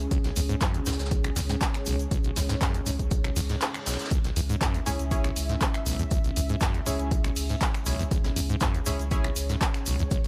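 Trippy and hypnotic, this acid house excerpt runs at 120 BPM in C# minor, driven by a squelchy, resonant saw acid bass riff with filter sweeps, tube saturation and tape echo over a deep triangle sub bass and a moody, detuned analog pad that both pump with the sidechain. An up-front, tape-warm electronic kick leads the drums, joined by a punchy analog drum machine playing finger snaps, handclaps and hi-hat, with a brushed vintage kit and grainy egg shaker sitting in the background. A reverse cymbal sweeps in at 3.4 seconds, and a nasal, band-passed chord stab with chorus and tape echo enters at 4.9 seconds, all set in a small room reverb.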